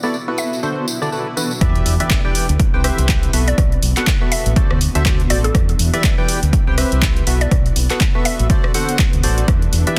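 Energetic yet bittersweet, this swung piano house excerpt at 122 BPM in E minor opens with a hollow, chorused organ stab riff, a close tambourine and a cloudy granular pad pumping in the background, joined at 0.4 seconds by a woody, warbling mallet-like synth pluck melody, as a very quiet electronic swell builds into the drop at 1.6 seconds. There it lands as an impact, the tambourine stops, and a dark, round fingered dub bass, an overdriven layered kick drum and a punchy analog drum machine with handclaps, hi-hat and rim click enter, set in light reverb and a dense, heavily limited master.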